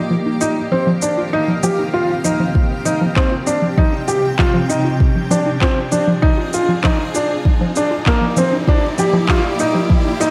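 Piano and strings electronica at 98 BPM in 4/4, this short build-up from a longer piece carries a melancholic, moving mood over chords moving from Eb6 to Cm, Fm and Gm. A blurred, granular cloud pad holds sustained chords from the start, pumping against the kick and bathed in its own reverb, while a warbling, lo-fi pluck with chorus and delay spins arpeggios and carries a filter sweep throughout. At 0.4 seconds a felt-muted upright piano enters up front with a soft, intimate riff, its thin felt and audible action noise plainly heard through a touch of delay, alongside electronic shaker and handclaps thinned by high-pass filtering. A very quiet riser creeps in at 1.6 seconds, and a deep electronic kick arrives at 2.6 seconds, sitting up front until 10.0 seconds. A moderate echo-chamber reverb gives the whole arrangement a roomy sense of space.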